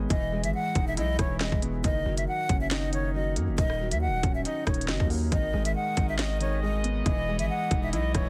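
A half-time drill groove at 138 BPM drives this menacing, ominous hip hop excerpt, with an up-front drum kit of hard-clipped kick, sharp snare, rim click and crisp hats, and a punchy, heavy 808-style bass. A breathy, hollow jazz flute carries the melody through tape echo over a felt-muted upright piano whose soft, intimate accompaniment reveals audible action noise. From 5.3 seconds, a distant, nasal section of stopped French horns adds sustained chords, all within a heavily compressed, radio-like sound and studio reverb.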